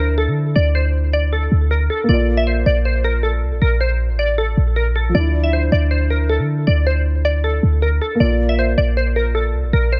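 A half-time pulse in 4/4 gives this melancholic, brooding trap and hip hop excerpt its heavy, unhurried sway. A clean 808-style bass sits up front, deep and boomy with a sine-like tone, a fast attack and a mellow decay. Above it, a glassy wavetable pluck carries the melody. Its crystalline, detuned unison tone warbles with chorus, ring modulation and a filter sweep, and analog delay trails behind it. A dark concert grand piano supplies the accompaniment. It sounds intimate and boxy, with audible action noise and its own analog delay. The harmony alternates between Dmadd9 and Bb throughout, and the small room ambience and echo-heavy mix leave the whole passage hanging in a brooding haze.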